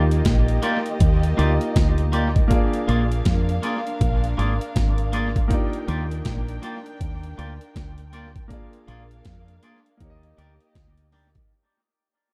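A gritty, thumpy breakbeat drum kit sits up front in this sweet, tender lovers rock reggae excerpt, its compressed hi-hat, kick and medium-tuned snare trailing dub echo, with a swung sixteenth-note feel. Beside it, a deep fingered electric bass plays round, punchy foam-muted notes, dark and direct. A twangy, clean electric guitar picks stabs through its own dub echo, while a polished, present baby grand piano adds accompaniment, also echoing. A woody, lush violin section bows a second line with vibrato and a smooth top, sitting lowest in the mix. The chords move between Ebmaj9 and Bb7 before settling on Ebmaj7 at 10.0 seconds, and the dark, dry production fades out across the full 11.5 seconds.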